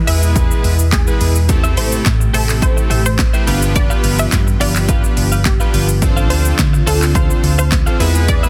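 A punchy, up-front house drum kit of handclaps, hi-hat, shaker, kick and snare drives this confident dance-pop excerpt at 106 BPM, joined by a round, dark hollow-body bass, a fat detuned sawtooth polysynth, a breathy background pad and a lush unison pluck melody with tape echo, all four of which pump against the sidechain, while a clean, compressed twelve-string electric guitar riff enters at 1.5 seconds.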